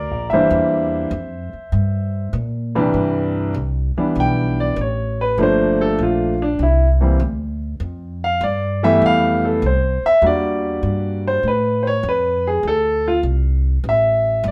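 Swung eighth notes in 4/4 carry this playful, relaxed fragment of a jazz piano trio. A warm baby grand piano with long, natural sustain and a woody, pizzicato upright bass on steel strings sit up front together in one room under moderate studio reverb. From 2.9 seconds the piano takes a solo, moving through colorful harmony such as Fmaj9#11, Em7b5 and a rootless Db7b13 before settling on Dsus2.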